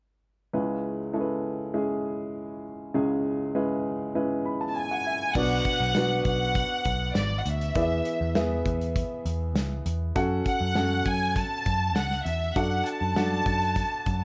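A straight 4/4 pulse drives this dramatic, propulsive piano pop excerpt, cut from a longer piece. A mellow, boxy upright piano opens alone at 0.5 seconds, its woody tone sitting up front as it outlines a C#m7 chord, and a short piano fill carries the music into the fuller second section. A bowed violin section takes the melody from 4.7 seconds, shaded with vibrato and a soft attack. At 5.4 seconds a round, foam-muted electric bass with an amped edge and a smooth-sounding acoustic drum kit with a tight kick, medium-tuned snare, hi-hat and crash cymbal arrive together, the kit's top end rolled off for a darker feel. The harmony then moves through Bm, E, F#m and D/F#, all framed by light reverb and a small room ambience.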